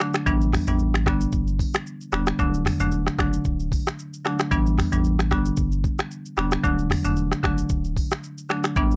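Up-front electronic afro-pop drums with a knocking kick, smooth hats, finger snaps, rim clicks, shaker and toms, roughened by vintage 12-bit sampler grit, carry this joyful, romantic afrobeats snippet alongside a woody, boxy hard-mallet marimba on padauk bars and, from 0.3 seconds, a deep, round sine sub bass with transformer saturation, all cycling through A7sus4, G and D in a dry, gritty hardware recording marked by lossy compression artefacts.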